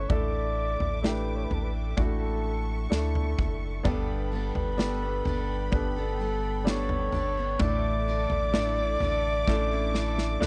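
A breathy flugelhorn with light vibrato carries the hopeful, heartfelt melody of this pop ballad over clear baby grand piano, a dark, lush bowed string section, a round sub bass and a natural country drum kit with a punchy kick. A full-bodied picked steel-string acoustic guitar adds arpeggios from 3.8 seconds, and a drum fill arrives at 9.5 seconds, all set in a dry, close 1970s-style small-room sound.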